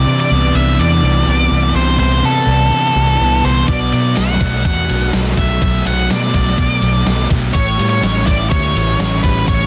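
An octave-fuzz lead guitar, dark and picked, sings a hazy, wistful melody up front over a double-tracked fuzz guitar riff with subtle chorus and a round, foam-muted fingered bass in this 124 BPM shoegaze and dream pop excerpt, moving from Cmaj9 to Bm7 and A7, as a thumpy gated 80s drum machine with a gated-reverb snare enters at 3.7 seconds, all in a dense, heavily limited modern mix.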